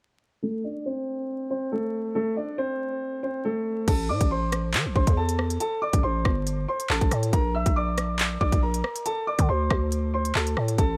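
Tense and menacing, this drill cut from a longer piece moves at 139 BPM in a half-time feel in A phrygian. It opens with a dark, boxy concert grand piano melody with long sustain, run through a low-pass filter sweep and delay over a bed of vinyl crackle. At 3.9 seconds a growling, buzzy 808-style bass with a fast attack and decaying tail joins an electronic drill kit of hard-clipped kick, crisp hi-hats, handclaps, rim clicks and crash cymbal, all up front in a dry mix, while the harmony shifts from A minor to B-flat at 7.3 seconds and a D5 at 9.1 seconds.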